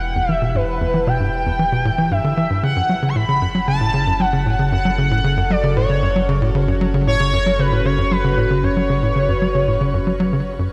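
A cut from a longer piece of cosmic, expansive space music, it opens with an evolving wavetable pad fading in beneath a round sine sub bass and a smooth, wave-folded synth lead that carries the melody up front, coloured by analog chorus, delay and shimmer reverb. At 0.2 s a punchy sawtooth sequencer bass riff with a filter pluck and delay enters to drive the straight 115 BPM 4/4 pulse, while the chords move from Em to F#m. The morphing pad, treated with phaser and shimmer, and a moderate plate reverb give the music a spacious, floating sound.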